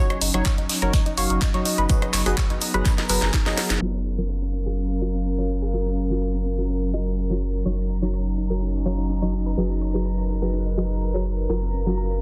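This progressive house excerpt at 125 BPM in F# major carries a euphoric, expansive mood, drifting between D#m7/F# and G#m7/F# before opening onto F#maj7 at 3.8 seconds. A punchy, tape-tinged electronic kick sits up front until 3.4 seconds alongside a faint vintage kit of shaker, hi-hat and snare, while a layered house kit with a cracking, softly clipped snare, handclaps, rim clicks and crash runs throughout. A thick, saturated sub bass holds F#1 with sidechain pumping, and a breathy pad and a deep, mellow chord stab with ring modulation and a moving notch both pump and shimmer with chorus, the stab's echoes trailing in dub fashion. In the background a tight sawtooth arpeggio, wave-folded and phased, pulses with its own dub echo and a filter sweep over the first section. After a drum fill and band accent, a very quiet downlifter passes and a reversed, granular texture rises bright and dreamy from 5.0 seconds, all within a dense, heavily limited master under light reverb.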